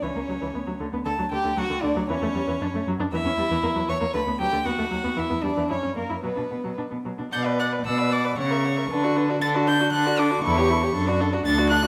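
A close, reedy first violin carries the melody up front in this lively, spirited fragment of a quick classical-period string quartet movement in B minor, taken at 116 BPM in 2/4 with a rubato feel, while a second violin with gut-string tone adds a second line, a distant viola with light vibrato and a nasal edge supplies the accompaniment, and a rich cello holds the bass, each part bowed by a single player in period style within the wet reverb of a recital hall.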